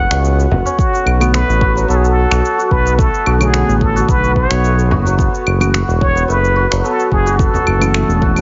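Overdriven electronic finger snaps, cabasa and claves set a straight 4/4 pulse at 109 BPM from 0.1 seconds, and a deep, layered, overdriven electronic kick drum joins at 0.8 seconds. A close, soft-handed frame drum adds a brief touch early on and returns at 4.9 seconds. This short, earthy, meditative slice of organic downtempo rests on a smooth sawtooth-and-triangle synth bass, sitting up front with tube saturation and sidechain pumping, under chords moving from F#m to Bm7 and then F#m7. A hammered santur rings out shimmering arpeggios through digital delay, and a bell-like tine electric piano soon joins in the background, clean yet gritty with vintage 12-bit sampler character, pumping and echoing. Out front, a jazz-style trumpet with plunger mute plays the melody with wah-wah inflections, light vibrato and scooped notes, its echoes trailing behind. Light reverb and studio ambience surround a heavily compressed, radio-like sound whose top end is dulled.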